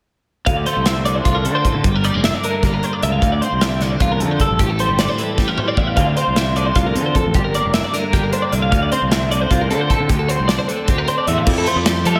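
Intricate and wistful, this short excerpt of math rock and midwest emo moves at a brisk 306 BPM in eighths, counted in an angular 7/8 with a straight feel in D minor. Two twelve-string electric guitars carry the harmony: one plays bright, clean, compressed arpeggios up front, colored by tremolo, digital delay and slapback echo, while the other offers warm, clean accompaniment thickened by ensemble chorus. Beneath them, a fuzz fingered electric bass adds a punchy, overdriven growl, and a modern studio drum kit with a punchy kick and medium-tuned snare sits forward in a pumping room, driving through crash, hi-hat and toms. The chords cycle through Dm7, Gm7 and Am7 before landing on Fmaj9, with a drum fill arriving between 5.4 and 6.0 seconds. A moderate scoring-stage reverb gives the whole band a big arena sound.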